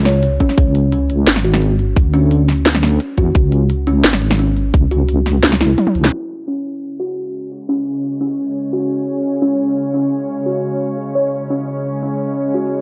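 A dry, gritty recording with light digital ambience frames this dark, cinematic half-time drum and bass excerpt at 173 BPM, opening on a woody, thumb-plucked kalimba playing arpeggios through a low-pass filter and analog delay alongside a deep, wobbling sawtooth-and-sine bass with chorus, with an up-front electronic kit entering moments later: a cracking snare, crisp filtered hats, toms and a tight kick. At 5.8 seconds the kick drops out for a drum fill, and from 6.1 seconds the bass and drums fall away while a filter sweeps across the kalimba. At 7.4 seconds a tense, string-like, detuned drone enters with sustained chords, vibrato, built-in reverb and sidechain pumping, carrying the kalimba to the end.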